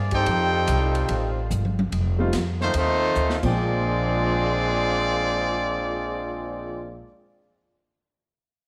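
Big band swing in Bb mixolydian at 145 BPM, energetic and joyful, this short excerpt cut from a longer piece opens with a clear, vintage trombone section holding very quiet sustained chords until 1.9 s, while the woody, pizzicato upright bass sits up front beneath a present trumpet section carrying the melody with light vibrato. A mellow trombone section plays a second line throughout, and a punchy, airy drum kit swings with crash, ride, hi-hat, snare and toms, adding fills before dropping out at 3.5 s. From 2.2 s a polished baby grand piano with short sustain accompanies in the background, all set in light reverb and small-room ambience over chords moving from F9 to F7 to Bb13.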